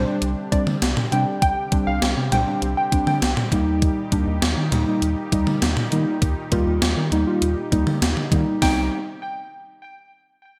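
Cool and driving, this synth-pop excerpt sets an up-front gated 80s digital drum machine, with thumpy kick, gated-reverb snare, cowbell, hi-hat and toms, over a rubbery, hollow square bass, muted felt-like synth keys and a smooth, vintage analog pad moving from Csus2 to Eb and on to Cm, while a warbly, lo-fi dusty pluck treated with chorus and digital delay plays a second line until 3.2 seconds and returns at 8.6 seconds, all in a bright 1980s-style digital production with lush hall reverb.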